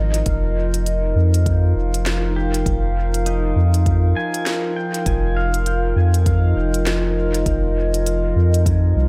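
Ambient dub at 100 BPM with swung sixteenths, deep and hazy over a sustained F9sus4, where a warbling, nostalgic lo-fi pad with chorus and slow-attack chords sits up front beside a round, dark analog bass, an electronic kit of woody snare and crisp hats is thrown into dub echo over a layered, tape-warm kick, and a clean, compressed pedal steel guitar plays fingerpicked slide arpeggios with volume swells and dub echo from 2.4 to 6.9 seconds, all within a digital ambience.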